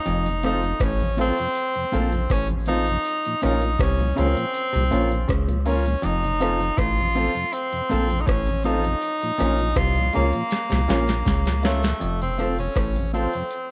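A booming, overdriven analog drum machine with a deep kick, crisp snare and metallic hats sets a straight 80 BPM roots reggae pulse in 4/4 alongside a round, soft dub sub bass up front, while a bright, punchy tenor saxophone carries the melody with dub echo over chords that alternate between F and Bb minor. Further back, a percussive, stringy clav riff, a dark tonewheel organ with chorus vibrato and slow rotary speaker, a clean electric guitar with dub echo and polished grand piano stabs fill out the meditative, hypnotic groove, all under light reverb and vinyl crackle. A drum fill runs from 10.5 to 12.0 seconds before the music moves into a new section, and the clip is cut from a longer piece.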